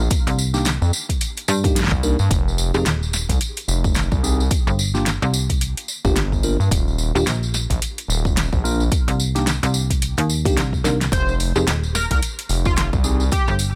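A gritty, driven synth bass opens this swaggering glitch hop excerpt at 109 BPM in F dorian, and a punchy electronic kick, a pop drum kit with a fat snare and metallic hats, and a jingly, band-limited tambourine arrive a moment later over a 16th-note swing. A snappy FM bass with a metallic, slap-like attack joins at 0.3 seconds, sharing the low register with the saturated, aggressive synth bass, both sitting up front. A mellow tine electric piano plays stabs through a phaser, sidechain pumping and dub echo, outlining a progression that moves from Cm9 through Fm7, Gm7 and Eb5, returns to Cm9, and then lands on F7(no3). After a drum fill at 10.8 seconds, an edgy, tearing sync lead with analog chorus, vibrato and dub echo enters at 11.1 seconds for a short, bright melodic phrase. The kick and drum kit carry studio reverb and a tape-warm, layered, produced character, and the whole mix sits in a digital ambience.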